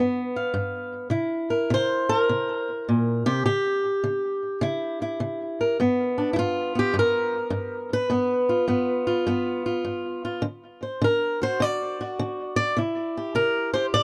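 Soulful and swaggering, this acoustic country blues excerpt rides a swung 103 BPM in 4/4, set in G mixolydian with the tuning pitched at A4 = 442 Hz. A lone fingerpicked swing-style acoustic guitar carries all 14 seconds, its boxy tone sitting up front and spanning G2 to F5 as it moves through G7, C7, a C#dim passing chord, back to G7, then D7 and C. Light reverb and a dark production give the cut from a longer piece a warm feel.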